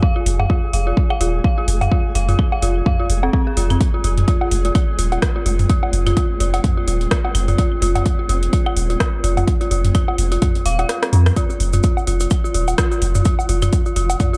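An overdriven, up-front electronic kick opens this hypnotic, sparse minimal techno passage in F minor at 127 BPM with a swung 16th-note feel, joined at once by an eerie, inharmonic FM synth bell riff drenched in chorus, dub echo and sidechain pumping, while a flickering, granular texture sits reverberant in the background. Within moments a punchy sine sub bass with a pitch-drop attack, a garage kit of metallic hi-hats and rim clicks, and dry, tape-tinged electronic toms, woodblock and claves through digital delay fill out the groove. The kick drops out for a drum fill at 10.9 seconds, and a bright acoustic cabasa enters at 11.4 seconds, all within a dark production under light reverb.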